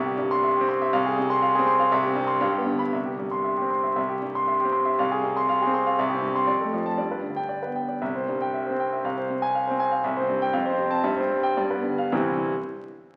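A solo concert grand piano, natural in tone with a deep bass and placed up front, carries this sparkling, brilliant virtuoso classical study in C major, moving in a rubato 2/4 at about 108-123 BPM across a range from C2 to C6 until 12.5 seconds. The harmony keeps returning to C major, colored by F minor over C and turning through G7 cadences, with a new passage beginning at 4.0 seconds and a brief closing phrase at 12.1 seconds. The sound has a wet recital hall reverb and the crackle of a very old 78 rpm record, and this fragment is cut from a longer piece.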